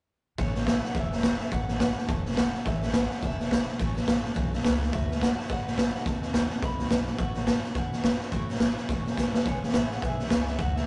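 Rollicking and upbeat, this swung rockabilly excerpt puts a gritty, boomy raw garage drum kit up front, while a twangy, slightly broken-up electric guitar through a small old amp carries the melody in the background over a bright, full-bodied picked steel-string acoustic guitar and a woody, thumpy pizzicato upright bass, all inside a rough rehearsal-room sound with tube saturation and light reverb, and a drum fill arrives at 9.2 seconds.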